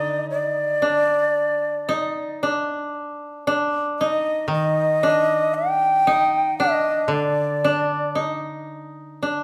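Calm and austere, this traditional Japanese excerpt moves in a free, rubato pulse, led by an up-front shakuhachi whose breathy, bright bamboo tone carries vibrato, tongued attacks and a chiff. Beneath it, a dry, woody koto played with fingerpicks sounds a second line in the middle register, while a warmer, lower koto plays accompaniment. The shakuhachi falls silent at 8.2 seconds and the two kotos ring on to 9.4 seconds, all within a moderate recital-hall reverb.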